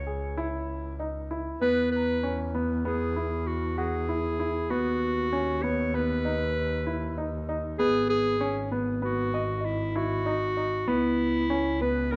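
A clear, smooth-topped clarinet opens this short cut from a longer contemporary chamber piece, playing a solo melody in a classical style over a bowed double bass. Moments later a worn baby grand piano joins with arpeggios that ring with long sustain, sitting up front beside the clarinet. The music moves at 97 BPM in an uneven 5/4 with a straight feel, and its mood is hypnotic yet restless as the harmony passes from C#m through E, B/D# and G#m7 before settling on C#m7. The bass is a single player, rich and focused with vibrato, anchoring the low end. At 2.0 seconds a bell-like celesta enters softly in the background, its delicate, sweet tone from soft felt hammers adding a mellow shimmer until 11.1 seconds. Light reverb gives the ensemble a gentle sense of space.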